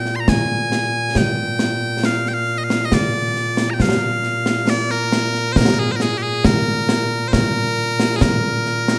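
Bright, piercing bagpipes lead this ceremonial Scottish pipe tune, carrying a continuous solo melody up front that ranges from Bb2 to C6. Set in Bb mixolydian with the pipes tuned to A4 = 438 Hz, the music moves at a stately 68 BPM in a straight 3/4. Concert snare drum and concert bass drum join at 0.1 seconds, their acoustic sound carrying dark cymbals and the air of a live room. A light reverb surrounds the performance, lending it a stirring grandeur. This brief piece, cut from a longer performance, runs 9.0 seconds.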